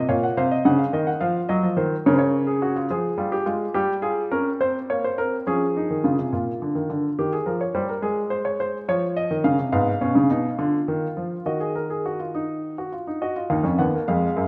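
Classical baroque-style fugue in three voices for solo baby grand piano, serious and driving in 6/8, cut from a longer piece. The piano sounds warm and present, placed up front and ranging from deep bass to the upper treble, while a wet recital hall reverb adds a lingering bloom around it. Minor-key harmony with diminished and half-diminished chords gives way to a brighter major-chord passage before the music turns to a new minor key around 9.7 seconds.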